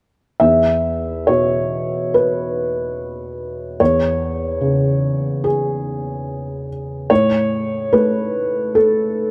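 A felt-muted upright piano plays alone from 0.4 to 9.3 seconds, its mellow, intimate tone sitting up front with audible action noise and spanning E2 to E5. This tender, hopeful fragment of neoclassical minimalist piano moves in a rubato 4/4 at 72 BPM in E major, tuned to A4 = 436 Hz, shifting from an E5 chord to C#m/E at 3.8 seconds before the harmony falls away at 7.1 seconds. Light reverb and a dark production frame the piece, which is cut from a longer work.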